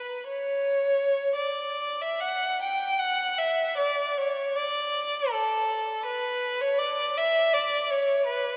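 Mournful and meditative, this brief classical fragment cut from a longer piece features a rich, smooth solo violin, bowed up front, even in tone, with vibrato and a silky top, unfolding freely in 3/4 with expressive rubato inside a wet church reverb that lingers for 3.2 seconds.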